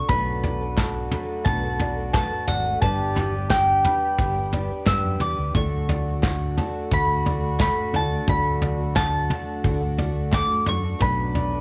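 Uplifting indie folk with a building arrangement, this excerpt sets an up-front, round mandolin melody over shimmering, octave-doubled picked twelve-string guitar, a woody upright piano arpeggiating in the background, a very quiet, intimate baby grand with audible action noise, a distant classical-style trombone second line, a punchy fingered electric bass, a soft brush drum kit and a hollow group handclap entering at 0.8 seconds, all in a small room with light reverb and the cassette tape character of a home recording on several parts, moving through Bm7, G and D.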